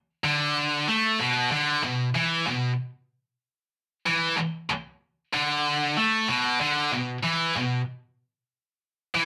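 Menacing and driving, this short rock excerpt at 94 BPM in 4/4 with a straight feel sits in B minor, tuned slightly sharp to A4 = 441 Hz. A lone heavy electric guitar plays from 0.2 s to 9.2 s, bright, picked and double-tracked, its high-gain distortion placed up front in the low register between B2 and A3. The rough rehearsal-room recording wraps it in a wet small-room reverb with a short 0.5-second decay, and the passage is cut from a longer piece.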